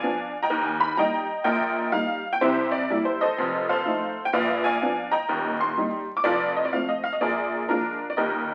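A detuned, jangly honky-tonk upright piano plays alone and up front, its bright, short-sustained notes spanning Eb1 to D6 in an exuberant, swinging stride jazz passage in Eb major at 125 BPM in 4/4. The brief excerpt, cut from a longer piece, moves through Bb7b9, Eb, C7 and F7 before closing on Bb7 near 7.2 seconds. A small, reverberant room and the crackle of a very old 78 rpm record give the sound its vintage character.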